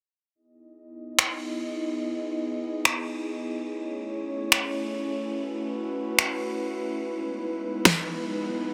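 Playful and bright, this future bass excerpt at 144 BPM in a half-time feel sets an up-front, airy, breathy pad with chorus, holding sustained chords in E major from 0.9 seconds, against electronic finger snaps and a huge overdriven snare with soft clipping that enter at 1.2 seconds, while a filter sweep runs on an analog synth pad from 0.4 seconds, all inside a vast ambient reverb and a dense, heavily limited master as the harmony moves from Emaj7 through Amaj7 and B9sus4 back to Emaj7.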